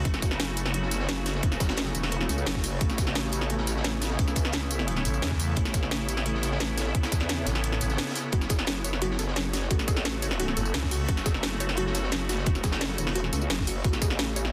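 A straight 4/4 groove at 174 BPM drives this tense, futuristic excerpt of dark technical drum and bass in F# minor, built on an overdriven, up-front electronic kick, a layered drum and bass kit with a cracking snare, bright hats and tambourine, and a very quiet, gritty breakbeat kit with a high-tuned snare underneath. A saturated, wobbling growl bass with chorus runs throughout, and a thick FM bass growls in bursts at the very start, from 5.1 to 8 seconds, and again around 10.6 seconds. Above them a swarming, detuned drone and a blurred granular cloud pad pump rhythmically between F# minor and A, while a lo-fi, warbling pluck with dub echo enters at 8.3 seconds to add mellow arpeggios in a dense, heavily limited mix.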